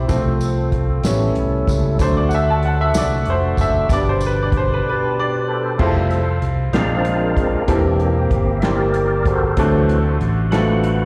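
Rolling in a slow, straight 6/8 at 63 BPM, this reverent, soulful gospel excerpt, heard as a live gig through the venue's PA in a recital hall, opens with a brilliant, woody upright piano solo carrying audible action noise and slapback echo over a distant, jingly tambourine that drops out at 4.5 s, a break arriving at 4.8 s before a fat, lightly overdriven tonewheel organ with third harmonic percussion, slow rotary speaker and chorus vibrato takes the solo from 5.8 s, all held up by a round, punchy fingered electric bass and a dark, smooth soul drum kit with a tight kick.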